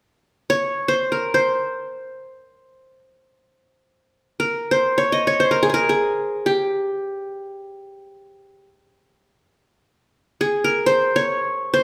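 The recording sits in a large studio room whose moderate reverb, decaying over about 1.3 seconds, surrounds a performance captured live in one space. This brief section comes from a longer piece in the Turkish makam tradition, with a hypnotic, soulful mood. A lone qanun carries it, entering at 0.5 seconds and playing solo through to 11.8 seconds. Its plectrum-plucked triple strings give the acoustic tone a bright edge, and the instrument sits up front in the mix. The line stays within a compact range from G4 to Eb5, unfolding in free time.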